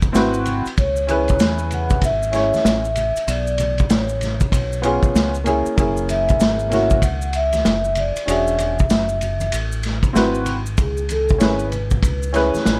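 A swung 96 BPM hip hop groove opens the excerpt, with a vintage drum kit upfront, its punchy kick and dusky cymbals roughened by 12-bit sampler grit in a pumping small room, while a round, deep fingered electric bass and close, dry congas and maracas sit underneath. This cool, smoky jazz-hop piece adds a worn, woody upright piano from 0.1 s, slightly detuned with audible action noise, accompanying through chords like C#m7, Bm9, F#9, E13 and G#7alt. At 0.8 s a soft-mallet vibraphone takes the melody, its mellow, band-limited ring carrying a slow motor vibrato and slapback echo over light reverb.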